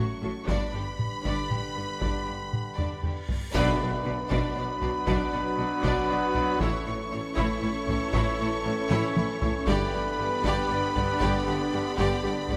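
In a 6/8 metre, close, heavy-stick taiko drums drive this dramatic, epic orchestral film-score excerpt from 0.5 s. Distant, intense violin sections carry the melody and a second line over lush violas with expressive portamento, while a bright cello section and focused double basses hold the low end. Tight trombones and mellow French horns sustain chords and a vintage-toned solo trumpet adds stabs, set in a moderate scoring-stage reverb. A drum fill from 2.8 s and a huge cymbal swell from 3.1 s crest at 3.5 s into a band accent and impact, a very quiet timpani strikes, and a rich, smooth string section enters with sustained chords.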